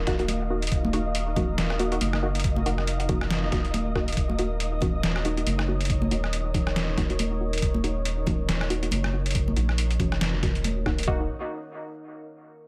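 A half-time 139 BPM groove with 57% swing on the 16ths drives this brooding, dark deep dubstep excerpt in Eb minor, where a gritty, pitched-down overdriven kick and sampler-style trip hop kit of hi-hat, rim click and medium-tuned snare sit over a round, up-front sub bass, while muted, detuned chord stabs with chorus and dub echo move under a filter sweep, a moody sawtooth pad with slow attack and reverb holds sustained chords, a flickering granular texture hovers in the background, and bright hard-hand congas with dub echo play distantly from 0.3 to 10.7 seconds.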